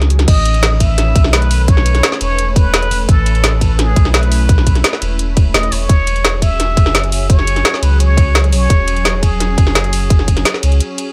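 A lush, detuned sawtooth pad with chorus, phaser and sidechain pumping opens this dreamy, uplifting liquid drum and bass excerpt at 171 BPM alongside a deep, round sine sub bass and a layered electronic kit with a woody snare, metallic hats, ride and crash, before a tight, up-front electronic kick and a clear, vintage plunger-muted trumpet arrive at 0.3 seconds, the trumpet playing a jazz-style solo of wah-wah, scooped notes through delay over a drop that moves from Aadd9(#11) to E69 in a dry mix, with a brief break at 10.8 seconds.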